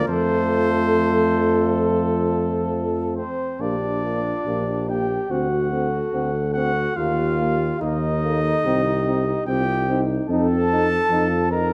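Classical brass quintet music with a warm, stately mood, cut from a longer piece and played with rubato over uneven beats. A close-miked trumpet carries the melody above a mellow, distant flugelhorn second line with light vibrato, while a French horn with light vibrato and a trombone in the background provide the accompaniment, and an up-front tuba with a smooth top anchors the bass. Moderate concert hall reverb surrounds the detailed sound, and a new section begins at 3.6 seconds on a Bb chord, moving through D7, Eb and Cm to F7 at 10.3 seconds.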